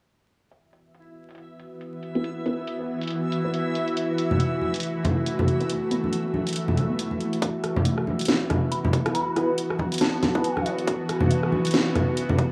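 A half-time deep dubstep groove at 139 BPM with a 16th-note swing opens at 0.5 s on a garage drum kit of cracking snare, rim click and bright, low-passed hats under a filter sweep, joined by a tense, string-like bowed-like drone, a reversed, granular backwards swelling texture, a muted sawtooth filtered dub chord stab with phaser, lush chorus and dub echo, and ringing acoustic congas, before a tight electronic kick enters at 7.4 s to drive a build-up and an eerie, inharmonic dark detuned synth bell briefly surfaces, all in a dark, meditative, dreamy mix soaked in plate reverb with vinyl crackle, cut from a longer piece.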